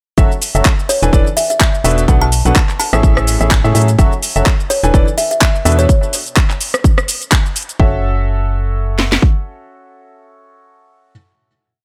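A four-on-the-floor kick at 126 BPM with a lightly swung sixteenth feel drives this bittersweet, soulful piano house piece in F# minor, where a punchy kick and cracking snare sit up front beside metallic hats, cabasa, handclaps and rim clicks from a second kit, a dark, organ-like FM bass pumps beneath a clear upright piano riff roughened by 12-bit sampler grit and digital delay, a plucked kalimba adds short phrases from 0.9 to 5.9 seconds, and at 7.8 seconds the drop gives way to a final F#m7 chord, with the piano ringing on after the bass and kick fall away.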